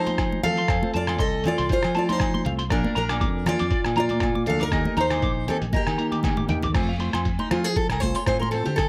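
Swinging sixteenths at 119 BPM drive this danceable highlife guitar band in F mixolydian, where a muffled, pitched-down sampler-style drum kit with thumpy kick and fat snare, round, punchy fingered electric bass, high-tuned congas and ringing agogo bells support an up-front, bright jumbo steel-string acoustic guitar melody with audible finger squeak, while a twangy clean electric guitar plays arpeggios through analog chorus and slapback echo and a dark, mellow electric guitar adds background accompaniment under lush chorus, all moving through F, Bb and Eb in light reverb until a drum fill at 6.1 seconds leads into the acoustic guitar's solo from 6.8 seconds.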